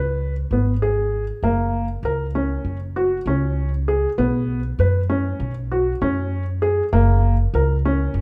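Set in a straight 9/8 at 197 BPM counted in eighths, this short excerpt from a longer contemporary chamber piece moves with an uneven, playful lilt and a shimmering mood. A felt-muted upright piano carries arpeggios from Bb3 to Cb5 throughout, its tone soft, mellow and intimate, with thin felt, short sustain and audible action noise placed up front. Beneath it, a pizzicato upright bass with steel strings holds the low end between Gb1 and Gb2, sounding woody and thumpy, also close in the mix. After an opening on a Db5, the harmony settles on Gb at 1.4 seconds, shifts to Cbsus2 at 4.2 seconds, and returns to Gb at 6.9 seconds. Light reverb and a dark, warm production surround the pair.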